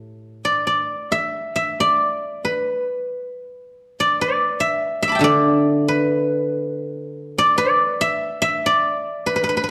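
Pastoral and flowing, this brief passage of Chinese traditional music, cut from a longer piece, features a solo guzheng. The playing moves in a free, rubato manner within a four-beat metre, spanning a broad range from low A2 up to high D6. Plucked with fingerpicks, the instrument's strings sound bright and silvery, ringing out clearly at the front of the sound. A moderate recital hall reverb surrounds the guzheng, giving it a sense of space that lingers for about 1.4 seconds. The overall production leans dark and warm, framing the sparkling strings across the 9.7 seconds.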